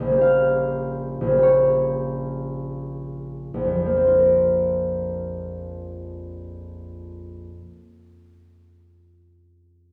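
A wet stone room surrounds this short classical passage with a 1.4-second reverb, and the listener seems placed further back in the space. A solo concert harp, bright and ringing with a thumb-plucked touch, sits up front and plays a gentle, mysterious line in a flexible triple metre, slowing through its opening over a Bbm6 chord before moving to Bbmadd9 at 4.2 seconds. Its notes span from a deep Bb1 up to F5, and the clip, cut from a longer piece, ends at 8.1 seconds.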